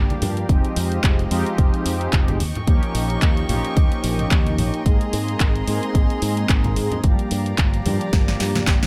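A punchy electronic kick drives this nu-disco groove at 110 BPM in 4/4, entering at 0.5 s with a light 16th-note swing. It sits up front over a house kit of handclaps, hi-hat and a punchy snare, and a drum fill arrives at 8.1 s. Bright, hard-hand congas sit in the background. A fingered electric bass with an envelope filter and tube saturation carries the low end, while mellow synth brass, round, detuned and dark with ring modulation, a filter sweep and vibrato, plays the accompaniment through chorus, cassette tape and tape echo. Above them a close, intimate chamber string section holds bowed sul tasto chords with light vibrato and sidechain pumping, as the harmony moves from Fm7 through Eb7 and Abadd9 to Gm7. Set in a digital ambience, this short cut from a longer piece feels sensual and cosmic.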